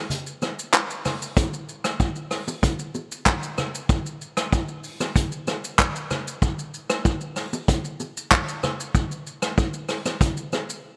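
A vintage brush drum kit, mid-forward and up front with a rolled-off top, opens this joyful, sunny afrobeats groove in a straight 4/4 feel alongside bright, close congas and bongos played with soft hands and sitting in the background, its handclaps, hi-hat, rim click and shaker joined by a punchy kick from 1.4 seconds, with light reverb and small room ambience giving this fragment of a longer piece the rough character of a home demo mix.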